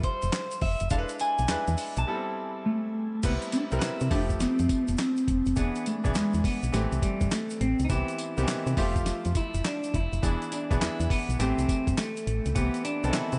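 A moderate echo-chamber reverb with a 2.4-second decay surrounds this punchy, bouncy new jack swing excerpt, and its top end is rolled off above 10.4 kHz for a soft, dusty sheen. At 103 BPM in 4/4 with a 64% swing on the sixteenths, it moves through A minor on a repeating cycle of Fmaj9, E7, Am7 and Cmaj7. A gritty, compressed sampler-style drum kit sits up front with a thumpy kick, medium-tuned snare, handclaps, hi-hat, tambourine and crash cymbal, all carrying a tape-like warmth. A round, dark FM bass with a fast attack and decaying notes joins at 0.2 s alongside a grainy, mellow tube shaker tucked into the background. A clean, picked electric guitar carries the melody up front through spring and shimmer reverb, while a brilliant grand piano with short sustain fills in the accompaniment under its own shimmer. The music drops into a silent gap from 2.1 to 3.2 s before the groove returns with the next section and runs to the cut at 13.4 s.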